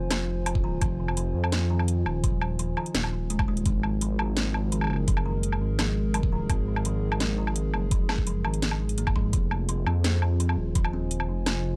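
A knocking, tape-softened electronic kick sits up front in this heavy, cinematic half-time drum and bass cut, entering at 0.6 s and driving a 169 BPM pulse in 4/4 in F phrygian. Beside it, a layered drum kit brings a cracking snare, metallic hi-hats and a woodblock, its sound re-recorded in a small room for a close, up-front feel. A deep, rumbling detuned saw bass, saturated and beating with unison voices, holds the low end from the very start. Underneath, a moody analog pad sustains chords from Fm7 to Absus2 and back to Fm7, its slow-attack tone colored by chorus, a moving notch, sidechain pumping and the crunch of a vintage 12-bit sampler. In the background, a woody, hollow kalimba plays ringing, band-limited arpeggios through an analog delay. The whole fragment carries a dry, gritty hardware character with a cassette tape sheen and digital ambience, as if lifted from a longer piece.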